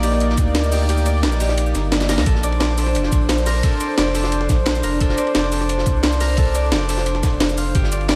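A mellow, chorused analog pad holds sustained chords that pump against the beat, while a bright, ringing Celtic harp plays fingerpicked arpeggios through an analog delay, opening this lush, dreamy liquid drum and bass passage over a deep, round sine sub bass sitting up front. A gritty, pitched-up sampler-style breakbeat with a high-tuned snare, hi-hat and shaker is layered over a dark, saturated acoustic kit in the background, and a thumpy, compressed kick enters at 0.4 seconds, drops out, and returns at 2.3 seconds after a drum fill at 2.0 seconds. The harmony shifts from a rootless Cm9 to Bbmaj9, all bathed in a lush hall reverb.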